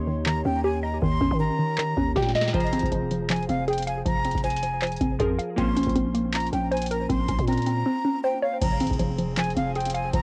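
Eerie, menacing trap-flavoured hip hop in a half-time feel, this short cut from a longer piece has the light-reverb haze of a home recording on cassette. It opens on a break over a glassy, warbling digital keys part and a hollow, bouncy square-wave pluck spinning arpeggios through chorus and tape echo, while a growling, buzzy 808-style bass sits underneath. At 0.3 seconds a breathy jazz flute enters with an expressive second line, its straight tone trailing tape echo, and a booming analog drum machine arrives with a deep kick, crisp snare, metallic hats, handclaps and crash, capping the break with a fill just before 2.5 seconds. The harmony moves from Eb7 to Fm and then Bbmadd9. At 8.6 seconds the keys drop out as a dark, nasal chamber string section enters with sustained bowed chords back on Fm, joined by a very quiet electronic impact.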